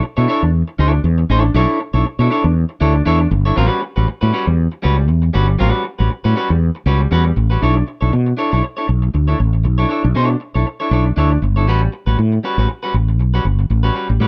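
Glamorous and driving, this short disco excerpt rides a lightly swung sixteenth-note feel over a vamp alternating between Bm11 and A13 chords. A round, mellow fretless electric bass sits up front, direct and amped, while a clean, picked electric guitar provides accompaniment, both playing throughout the 14.3 seconds. The production is dry and dark, keeping the sound close.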